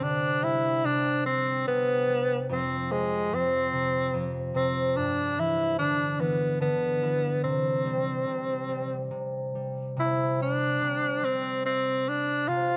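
Gentle and tender, this short lullaby for children sways in an unhurried three-beat metre, cut from a longer piece. An up-front tenor saxophone carries the melody in a jazz style, its bright, punchy tone marked by vibrato, scooped notes and a smooth top with a forceful edge, while a concert harp fingerpicks a ringing, acoustic accompaniment just beneath it. Light reverb gives the pair a little air, and the tune moves into a new section at 10.0 seconds.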